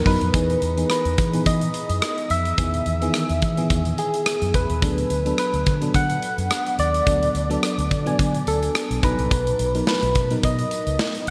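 A gentle, round synth lead carries the melody from the start, its struck, keys-like tone treated with chorus, phaser, shimmer reverb and digital delay. A glassy, bell-like FM electric piano with a warbling chorus shimmer plays alongside it over Emaj7, D6 and Bmaj7 chords. A dark, foam-muted fingered bass and a punchy, up-front rock kit of kick, snare, rim click and hi-hat drive this nostalgic, uplifting 1980s-style pop groove at 107 BPM with a light sixteenth-note swing, all set in a lush hall with bright digital polish.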